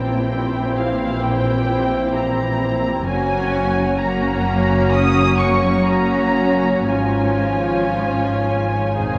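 Classical slow romantic orchestral music, serene and lyrical, unfolding with rubato in a vast, echoing cathedral space. Muted violins carry a veiled, dark melody over a second violin line and con sordino violas, while mellow French horns hold sustained chords in the background and muted cellos and double basses, bowed with vibrato, anchor the bass. Near the end of this short passage, at 9.0 seconds, a soft-malleted timpani adds a brief, round fill.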